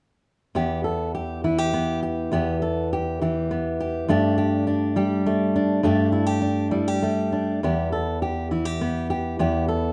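A rubato 3/4 lilt around 102 BPM carries this intimate, melancholic folk fragment in E minor, tuned slightly flat to A4 = 437 Hz, where a solo fingerpicked steel-string jumbo acoustic guitar, full-bodied and up front with audible finger squeak, spans E2 to A4 and moves from Em at 0.6 seconds to Gsus2 at 4.1 seconds and back to Em at 7.6 seconds, all set in a moderate large-studio reverb with a 1.3-second decay.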